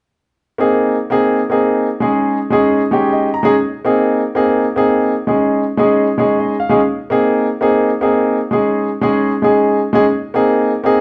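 Lively and danceable, this short jazz excerpt, cut from a longer piece, moves along in a straight four-beat feel. A grand piano carries the whole passage as accompaniment, entering at 0.6 seconds and playing through to the close at 11.0 seconds, its tone smooth and vintage and placed up front in the mix. The harmony rocks back and forth between an Ab add9 chord and a Db sus2 chord, giving the passage an open, unresolved shimmer. Short piano fills appear at 2.7 and 6.0 seconds, adding a touch of decoration between the chord changes. The sound is that of a band playing live in one large studio room, with a generous wash of reverb and a mellow top end that softens the edges.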